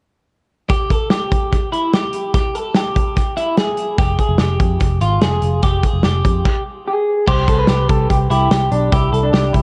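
A straight 4/4 pulse drives this breezy, youthful slice of jangly indie pop, cut from a longer piece. From 0.7 seconds a loose drum kit sits up front with a tight kick, a medium-tuned snare, hi-hat and dark crash cymbals, all touched by dub echo. Alongside it, bright, twangy twelve-string electric guitar arpeggios ring out clean and compressed, bathed in spring reverb and echo. A round, foam-muted vintage bass with an amped, dusky tone joins at 4.0 seconds, just after the harmony shifts from Emadd11 to Fm. During a brief stop, an electric guitar through a small old amp, murky and slightly broken-up, takes the melody from 6.9 seconds with its own dub echo, and the second section settles on C5. The echo-heavy mix carries a small-room ambience and a cassette-tape character, with every part placed up front.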